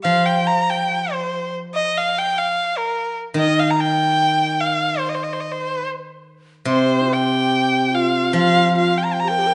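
A wet recital-hall reverb surrounds this brief passage of Chinese traditional chamber music, cut from a longer piece, and the top end is rolled off above 10.7 kHz. The tempo sits at 73 BPM in 2/4 but flows freely in rubato, giving a graceful, tender mood. A single bowed erhu, rich and focused and placed up front, carries the melody with vibrato and portamento. Beneath it, a steel-string zither played with fingerpicks supplies silvery, ringing accompaniment, also close and present. At 6.7 s a breathy bamboo xiao enters in the background with a second line; its end-blown tone is bright, with lifted highs, soft attacks, vibrato and an unsteady quality, continuing until the passage ends at 9.5 s.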